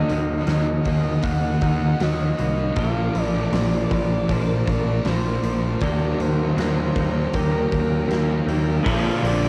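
A growling, overdriven electric bass sits up front in this hazy, blissful shoegaze and dream pop excerpt at 79 BPM, joined by a thick fuzz guitar riff, a hollow-body overdriven guitar riff with reverse reverb in the background, and very quiet, compressed clean guitar arpeggios. Above them, a breathy, flute-like synth lead carries the melody with vibrato and tape echo, while a lush vintage string machine holds sustained chords through phaser and ensemble chorus. A huge arena drum kit with a fat snare, punchy kick and pumping room enters at 0.1 s, and the chords move from Ebmadd9 to Bbmaj7, Eb and Bbmaj9 in a light reverb, all captured as a home recording on cassette.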